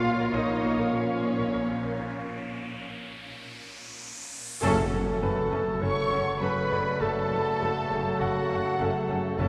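In a straight 4/4 at 101 BPM, this ominous, mysterious suspense cue for a film score opens in Bb minor with veiled, con sordino violin sections carrying the melody and a second line over muted violas, cellos and double basses, a dark trombone section, a French horn section, a ringing fingerpicked Celtic harp riff, faint glints of bright grand piano and a mellow, morphing wavetable pad, while an electronic riser builds from 1.4 s into an impact and a timpani hit at 4.6 s, where the music shifts to F# minor and a warm solo clarinet joins with a second line, all bathed in a long cathedral reverb.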